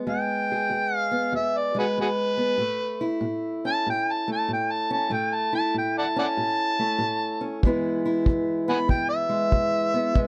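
This close, dry recording catches a gritty, amplified harmonica up front, its overdriven tone full of vibrato, scooped notes and tongue slaps as it takes a jazz-tinged solo over a dark, boxy parlour steel-string guitar fingerpicked in E major. The acoustic country blues moves at a laid-back, swaggering 96 BPM with a swung feel, shifting from E to A and back. At 7.6 seconds a tight, rolled-off kick drum with brushes joins for the last stretch of this short excerpt.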